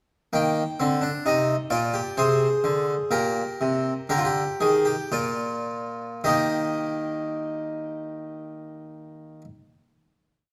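A full-bodied, French-style harpsichord with two sets of plucked strings sits up front in this brief, lively yet stately baroque-style three-part fugue in Eb major and 3/4, moving at 52-67 BPM and slowing from 0.3 to 8.0 seconds as its imitative counterpoint unfolds through a short exposition before settling on a final Eb chord at 6.2 seconds, all captured by close, detailed microphones within a moderate recital-hall reverb.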